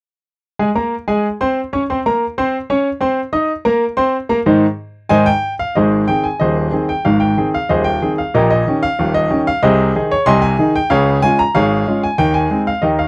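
A bright grand piano carries this short ragtime fragment alone, entering at 0.6 seconds and playing through to 13.1 seconds across a broad range from deep bass to high treble. The mood is jaunty and lively, set in a straight duple metre with a bright, brilliant, polished tone. The instrument sits up front and intimate, with a short sustain and audible action noise that adds a tactile presence to each note. The opening passage gives way to a new section at 5.8 seconds, where the harmony moves through a dominant seventh and a turn to the subdominant before settling back toward home. The recording is dry and close in a 1970s studio manner, with only a modest booth ambience around the piano, and the passage is cut from a longer piece.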